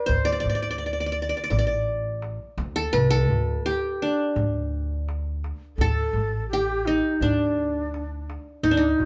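A fingerpicked qanun opens this excerpt from a longer Turkish makam piece in D hicaz, its triple strings ringing bright-edged and up front, joined almost at once by growly pizzicato upright bass and a clay darbuka played with soft hands, sitting close and dry in the background at a straight 84 BPM in 4/4. At 5.8 seconds a breathy, reedy end-blown ney takes up a second line with tongued notes and vibrato. The band plays live together in one large studio room with moderate reverb, giving the whole a warm, passionate mood.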